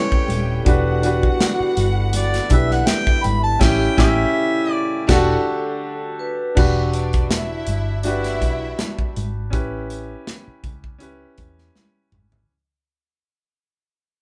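Lush 1970s-style soul in E dorian at 81 BPM, silky and bittersweet, opens with a mellow, distant harmonica solo over a sul tasto string section with vibrato and a soft attack, an up-front baby grand piano, a tight French horn section in the background and a very quiet, metallic vibraphone, moving through A7 and Em7 chords. A punchy modern drum kit, a dark, foam-muted fingered electric bass and thick-skinned congas drive a gentle 16th-note swing. A band accent runs from 3.6 s to 6.6 s, the harmonica stops at 5.1 s, and the horns drop away at 6.6 s. The final section fades out over Em7 and A7, the strings and vibraphone drop out near 9 s, and a drum fill closes the excerpt at 11.7 s.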